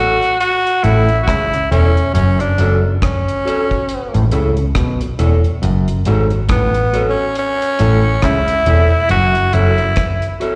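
Roots reggae at a laid-back, meditative 69 BPM in F# minor with a 16th-note swing, this live-gig excerpt alternates A and F#m as a raspy, punchy tenor saxophone carries the up-front melody over a round, foam-muted picked electric bass, a dark clean fingered electric guitar with slapback and tape echo, a dry deep drum kit of tight kick, hi-hat and rim click with a rolled-off top and 12-bit sampler grit, and an overdriven, stringy clav riff entering at 0.8 s, all heard through the venue's PA in recital-hall reverb.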